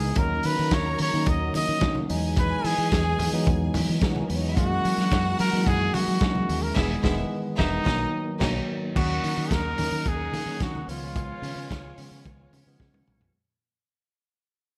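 A breathy, mellow trumpet with scooped notes and light vibrato carries the melody up front in this glamorous, danceable disco piece at 109 BPM in C# dorian, over a muffled, lo-fi vintage drum kit, a direct, amped fingered bass, a worn and slightly out-of-tune tine electric piano, a lightly overdriven tonewheel organ through a slow rotary speaker, a lush bowed violin section in the background and very quiet low-tuned congas, with a band accent at 6.8 seconds before a fade-out from 9.0 seconds closes on a drum fill at 12.8 seconds.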